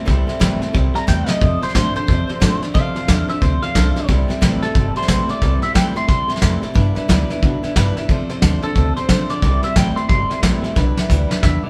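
Retro and rowdy, this short rockabilly excerpt from a longer piece swings hard at 180 BPM in 4/4, sitting in C major with a bouncing swing feel. A picked swing-style acoustic guitar with a boxy tone picks out the accompaniment from the start, while an electric guitar through a small old amp plays a low, slightly broken-up riff alongside it, fingered and compressed. An upright bass with gut strings adds a woody, thumpy pulse, and a vintage brush drum kit sits up front with a punchy kick, medium-tuned snare and hi-hat, its top gently rolled off. At 1.0 s a second electric guitar, picked and twangy with a phaser, enters high above the band to carry the melody, just as a quick drum fill kicks in around 1.1 s. The chords move between C6, F6 and G6, and another drum fill closes things out from 10.8 s, all heard as a band playing live in one room with moderate studio reverb.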